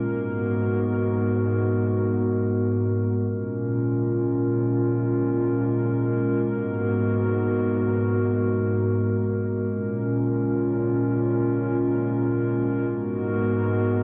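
Hip hop in free time, hazy and ethereal, carried by a single dark analog pad playing alone for the full 14 seconds of this fragment cut from a longer piece. The deep, detuned pad blends square, sawtooth, triangle and sine waves with a sub octave and wave-folding, its slow attack and sustained tones sitting up front with chorus as it alternates between G#m7 and A#m7, changing at 3.3, 6.5, 9.7 and 12.9 seconds. Light reverb surrounds it, and the production stays dark and warm, with nothing above 10.3 kHz.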